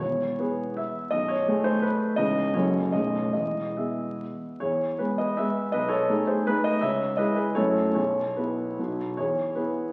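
Dotted rhythms drive this romantic classical dance in 3/4, which moves with flexible rubato between 132 and 179 BPM and carries a proud, graceful air in E major, tuned slightly low to A4 = 437 Hz. A solo concert grand piano sits up front with a warm tone, deep bass and long sustain, stating its opening phrase and then repeating it from 4.6 seconds. The sound of a very old 78 rpm record, with crackle and a reverberant recital hall, frames this short passage cut from a longer piece.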